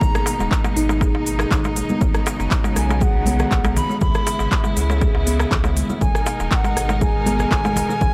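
A spiritual, earthy afro house groove in 4/4 with a light swing on the sixteenths, cut from a longer piece and heard in a small, dry room with a gritty hardware edge. An airy, reedy bass bansuri carries the melody from the start, its bamboo tone crisp in attack and touched with vibrato and an analog delay, while a woody, hollow kalimba plays mellow arpeggios that also trail off through analog delay. Beneath them, a rich bowed string section holds smooth sustained chords moving from G#madd9 through Badd9 and C#m7 back to G#madd9, and a deep, round sine sub bass anchors the low end, with the strings, kalimba and sub bass all pumping against the sidechain. A punchy, layered electronic kick sits up front with tape warmth, joined at 0.1 seconds by an afro-pop kit of handclaps, crisp hi-hats and rim clicks, then at 0.3 seconds by a clay-shelled darbuka played with soft hands, close and dry. Hard-handed congas and a grainy, bright cabasa fill out the percussion in the background.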